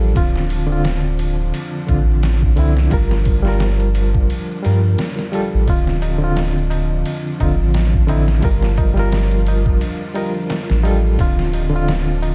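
Brooding and melancholic, this trip hop fragment is cut from a longer piece and moves with a lightly swung sixteenth-note feel over a Dm7 to Gm7 progression. A reedy, barky electric piano sits up front, lightly overdriven and pulsing with fast tremolo and a grainy 12-bit sampler grit. A soft, round dub sub bass with tube saturation sits deep and prominent beneath it, while a pitched-down, compressed sampler-style drum kit enters at 0.2 seconds with a thumpy kick, medium-tuned snare and ride cymbal, gritty from overdrive. Behind them, a mellow string machine cello patch holds sustained chords through phaser and ensemble chorus. A high-tuned, close and dry tabla joins in the background at 5.7 seconds, and a very quiet, tense, string-like drone on F4 with vibrato slips in at 7.4 seconds. The mix is dry, with little reverb, and vinyl crackle runs throughout.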